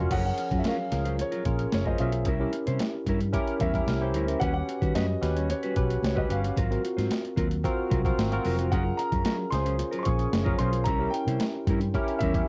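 Slick and nocturnal, this is a short excerpt of polished 1980s jazz-funk pop moving at 112 BPM in a straight 4/4, cut from a longer piece. A clear, intimate grand piano carries the melody high in its register, its action noise audible, while a bright, barky tine electric piano sits up front with accompaniment, coloured by analog chorus through a combo amp. A dark, clean electric guitar played with the fingers adds a mellow riff with subtle chorus, and a vintage foam-muted fingered bass, round and punchy, anchors the low end. The sampler-style boom bap kit is gritty and overdriven, with a thumpy kick, medium-tuned snare, hi-hat and crash, re-recorded in a small room onto cassette and placed up front, while very quiet high-tuned congas ring underneath with hard hands. The harmony cycles through Gbmaj7, C7b9, Eb7alt and Ab13, and the whole track has the light reverb and character of a home cassette recording.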